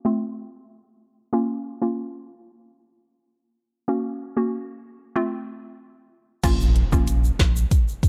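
Sultry and hypnotic, this dancehall excerpt moves at 94 BPM in a straight 4/4, set in Bb harmonic minor. It opens on a hollow, bouncy square-wave pluck with a noise layer and chorus, playing mellow accompaniment up front through the chords F, Bbm, Gb and back to F while a filter sweep runs across the first 6.4 seconds. At 6.4 seconds the piece lands on Bbm as an electronic afro-pop drum kit arrives with a deep kick, woody snare, dark hats, rim click and crash cymbal, joined by a round sine sub bass holding Bb1. A close, dry acoustic tube shaker adds a bright edge, and an electronic impact hits at 6.5 seconds. The production is dark, warm and low-pass filtered, sitting in a digital ambience.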